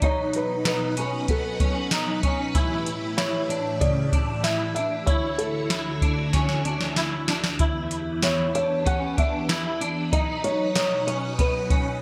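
A felt-muted upright piano carries the melody in this ethereal, melancholic dream pop excerpt, a dark, mellow line full of audible action noise, over swirling phased string-machine chords with slow attacks, a clean, picked electric guitar playing arpeggios through ensemble chorus and delay, and an up-front, tape-warm vintage rhythm box with a deep kick, crisp snare and metallic hats that plays a fill at 6.3 s, the whole piece sitting in a moderate plate reverb with bright 1980s-style digital production.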